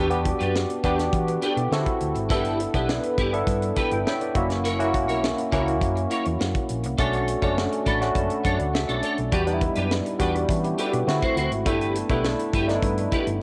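A barky tine electric piano, bright and lightly overdriven through a combo amp with analog chorus, sits up front in this bittersweet, urban slice of polished 1980s jazz-funk pop, adding fills at 3.5 and 7.6 seconds over chords such as Em7, D9 and Bm9. A clean, picked electric guitar plays a riff through ensemble chorus, while a dark, round hollow-body bass gives a punchy low end and a tight funk drum kit with a high-tuned snare joins from 0.1 seconds, close and present. Moderate spring reverb and a home cassette recording lend the whole a homespun haze.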